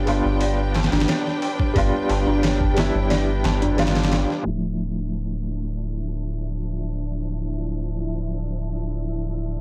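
A dry recording under vinyl crackle and a muffling low-pass filter carries this dark, cinematic trip hop excerpt at 89 BPM, anchored by a compressed, pitched-down sampler drum kit with a thumpy kick and overdriven grit, a very quiet low-tuned tabla and a deep, round dub sub bass, the drums and bass sitting up front. A soft, felt-muted upright piano with audible action noise plays through tremolo and tape echo, a lush, distant string section with vibrato holds chords moving from G7 to Dmadd9, and an eerie, inharmonic FM bell arpeggiates with chorus in the background. From 0.7 seconds a reversed, granular swelling texture hovers faintly, and at 4.5 seconds the drums and bell drop away as a filter sweep moves over the strings, with a faint electronic downlifter entering moments later.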